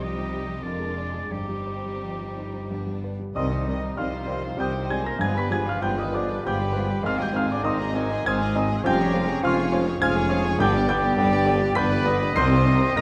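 A polished baby grand piano sits up front, carrying the melody across a passionate, tragic classical passage in a rubato three-four lilt, cut from a longer piece. Behind it, a distant violin section also carries the melody while a lush, expressive second violin section, a roomy solo oboe and a very quiet viola section add a second line and accompaniment, with bowed cellos and a rich double bass section underpinning the bass from the start. At 3.3 seconds an airy, hollow flute enters, and at 3.4 seconds the texture grows into full orchestra: a soft clarinet and a vintage-toned bassoon join the inner lines, a mellow French horn section holds sustained chords, and a dark, punchy trumpet section adds distant stabs over a dark tuba. Timpani struck with soft mallets give round, dry accents in two spots, the second arriving at 10.6 seconds as the harmony turns toward its close. Light reverb and close, detailed microphones keep the sound intimate and clear.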